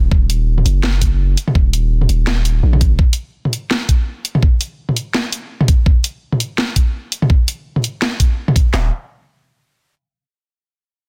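A deep, sine-toned 808-style bass opens this tense, heavy half-time drum and bass excerpt, holding until 3.0 seconds and returning briefly at 8.7 seconds, while two up-front, layered electronic drum kits, re-recorded in a small room, drive a swung 16th-note feel, entering at 0.1 and 0.3 seconds respectively, one bringing a knocking kick, cracking snare and handclaps and the other bright hi-hats, snare and toms, within a dry, dense, heavily limited modern master.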